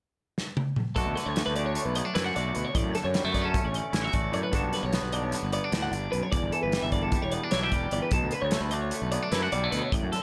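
A fast 9/8 pulse at 302 BPM counted in eighths drives this short cut from a longer math rock and midwest emo piece, with a straight feel and an intricate, playful mood. A loose indie drum kit opens with a fill from 0.4 s, then settles in with hi-hat, tight kick, medium-tuned snare and toms, sounding acoustic and up front in a small room. At 1.0 s the rest of the band arrives: a twangy electric guitar plays clean, fingered accompaniment with a warm tone, while a twelve-string electric guitar picks bright, compressed arpeggios higher up. Underneath, a fingered electric bass runs through fuzz and overdrive for a growly, up-front sound. The chords move from Bm7 through Dmaj7, Gmaj7 and Em7 before returning to Bm7, all wrapped in light reverb.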